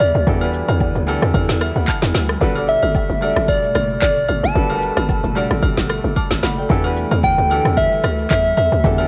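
An afro-pop drum kit sets a swung amapiano groove at 112 BPM in 4/4, its deep kick, woody snare, crisp hats, rim clicks, handclaps and shaker sitting up front, while agogo bells and woodblock add close, dry accents. Beneath it a hollow, bouncy log drum bass with a fast attack and decaying tone carries the low end, also placed prominently. In E minor, the harmony moves from Em11 to Gmaj9 at 2.4 seconds and back to Em11 at 6.7 seconds, held by a soft, flute-like pad that warbles with ensemble chorus in the background. A clear, intimate grand piano accompanies with audible action noise and short sustain, stepping out with a brief fill at 1.3 seconds. Over the top, a round, keys-like synth lead carries the melody with a bright, warbling vintage character, colored by chorus, cassette tape and tape echo. Light digital ambience and a cassette-recorded grain give this deep, hypnotic excerpt a homespun feel.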